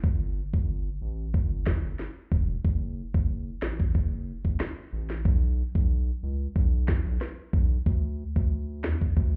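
An up-front electronic island pop drum kit drives this bouncy, hypnotic dancehall excerpt, its knocking kick and sharp snare joined by finger snaps and rim clicks from 0.0 to 9.3 seconds. Beneath it, a round analog bass sits just as far forward, its deep, dark tone shaped like a sine or triangle wave, with a fast attack and sustained notes moving between E1 and E2. The groove rolls at 92 BPM in a straight 4/4, rooted in F# phrygian with tuning at A4 = 439 Hz. The whole passage stays in one section, cut from a longer piece and lasting about 9.4 seconds. The sound is dry with little reverb, yet the mix comes across muffled, as if heard through a wall, with a touch of club reverb and EQ shaping the overall tone.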